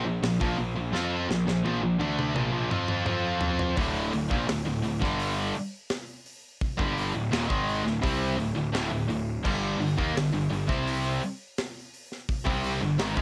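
An overdriven electric guitar sits up front with a bright, picked riff in this relentless, heavy metal cut, backed by a double-tracked, scooped high-gain guitar and a tight distorted guitar, each guitar carrying a cassette-tape grain. A growly fuzz bass, direct and amped, digs in beneath the riff, while a polished acoustic drum kit with a punchy kick and high-tuned snare enters at 0.2 seconds and plays a fill from 0.9 to 3.8 seconds. This home cassette recording has light reverb, and a new section begins at 3.8 seconds on a D5 chord.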